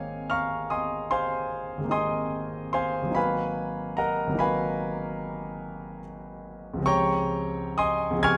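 Serene and luminous, this brief fragment of impressionist solo piano drifts in a rubato 9/8 at 48 BPM in Ab major, its harmony moving from Abadd9 to Bmaj7/Ab at 3.2 seconds and settling on Dbmaj7#11 at 6.9 seconds. The grand piano sounds clear and intimate, spanning Ab1 to Ab6 with long sustain and audible action noise, placed up front by close, detailed microphones. A moderate recital hall reverb gives the natural tone a gentle sense of space.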